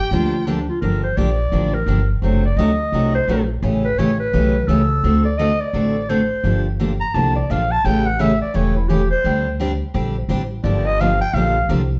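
A growling, raspy clarinet takes the solo from 0.8 seconds through this bittersweet, virtuosic excerpt of acoustic string swing in G minor at 171 BPM, its gritty jazz tone softened by a mellow core and light vibrato. A warm, bowed violin sounds a single brief vibrato note at the very start. The bright, freshly strung picked steel-string guitar and the woody, thumpy pizzicato upright bass sit up front, while a wet studio reverb and a distant, dark-topped sound place the group further back in the room.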